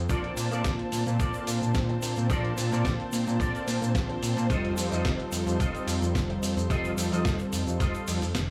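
A fat, detuned sawtooth analog bass sits up front with tube saturation and sidechain pumping, driving this groovy, sunny nu-disco cut in Bb major at 109 BPM, moving from Bbmaj7 to F7 at 4.5 seconds. Around it, round, dark synth brass with chorus, vibrato, cassette-tape color and dub echo carries the accompaniment. A bright, twangy envelope-filtered electric guitar picks a clean riff, while lush bowed strings hold soft, pumping chords in the background. A gritty, thumpy sampler-style kick and a dusty soul kit with a fat snare, hi-hat and shaker keep a straight 4/4 groove, joined by a faint tube shaker with group handclaps in a small, lightly reverberant room.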